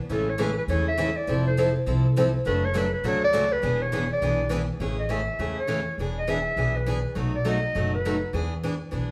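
A wet, roomy studio reverb surrounds this short cut from a longer acoustic string swing piece, played live by a band in one room. At a brisk 204 BPM in A major, tuned slightly low to A4 = 435 Hz, the music has a swinging, playful feel. A breathy, clear clarinet sits up front with vibrato, scooped notes and a smooth top, carrying the melody in a jazz style and moving into a solo at 4.8 seconds before falling silent at 8.3 seconds. Two picked steel-string acoustic guitars supply the accompaniment: a bright concert guitar up front plays throughout, while a full-bodied jumbo guitar sits in the background and drops out at 4.6 seconds. Underneath, a pizzicato upright bass with gut strings gives a woody, dark, thumpy pulse. The harmony moves from Amaj7 through Fmaj7 and Dmaj7/F# to E7, then returns to Amaj7 and moves through E7 and B7 back to E7 in the second section.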